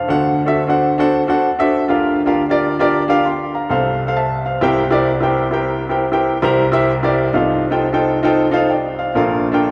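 Swung eighth notes in 4/4 carry this soulful, hopeful gospel passage, cut from a longer piece and played by a solo upright piano from the start to 9.7 seconds. The piano sounds woody and natural, with long sustain, sitting up front and spanning from deep bass to high treble notes. It moves through D7, Gm7/D, F/C, C7 and F7/C before landing on Bbmaj7 at 9.1 seconds, all bathed in the generous, wet reverb of a church or concert hall.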